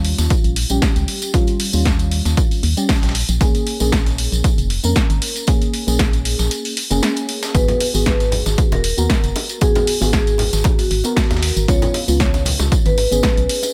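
The organ-like FM bass is hollow and dark with a fast, percussive attack, sitting up front with tube saturation and sidechain pumping in this hypnotic, moody deep house cut from a longer piece. Above it, a mellow FM electric piano plays soft, round stabs coloured by chorus, phaser, digital delay and a noise layer, pumping with the bass over chords that move from D#9 to A#m7, G#m7 and C#7. The beat pairs a punchy, tape-warm electronic kick with a punchy analog drum machine supplying snare and hi-hat, while a gritty, overdriven sampler-style kit sits in the background and a close, jingly tambourine enters at 0.2 seconds. The kick drops out briefly at 6.5 seconds, and at 7.5 seconds a metallic, ringing vibraphone with medium mallets takes the melody, roughened by vintage 12-bit sampler grit, as acoustic congas and bongos with hard hands join soon after. The mix is dry and close, with a gentle swing on the sixteenths.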